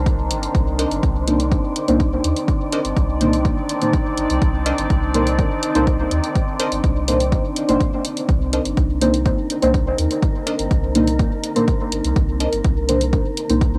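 Heard through the haze of a home cassette recording in a moderate studio-sized reverb, this meditative, nocturnal dub techno fragment sits at 124 BPM in 4/4 with a straight feel, in C minor and tuned slightly flat to A4 = 437 Hz. A punchy analog kick, tape-warmed and up front, drives the piece alongside a tape-colored electronic hi-hat, both starting at 0.1 seconds. Underneath, a soft, round dub sub bass holds the low end with sidechain pumping, while a deep, moody ambient pad sustains a Cm9 chord throughout, its detuned sawtooth layers evolving through chorus, built-in reverb and cassette saturation. Two chord stabs carry the dub character, each trailing dub echo: a mellow, dark stab entering at 1.3 seconds, colored by chorus, phaser and gritty 12-bit sampler texture, and a crisp, wave-folded digital wavetable stab with a filter pluck and moving notch, set in the background from 0.8 seconds. 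An airy, breathy wind-like noise layer drifts faintly behind it all, pumping gently with the kick.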